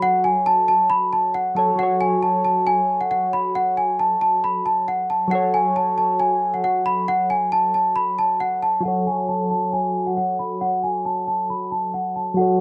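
Light studio reverb frames this brooding, menacing half-time hip hop excerpt, where a large celesta carries the melody up front with a bell-like, delicate ringing from hard felt hammers, while quieter, mellow electric-piano-like synth keys with a round, fast-attack, decaying tone, coloured by chorus and phaser, accompany beneath, and a filter sweep runs from 8.8 seconds to the cut at 12.6 seconds.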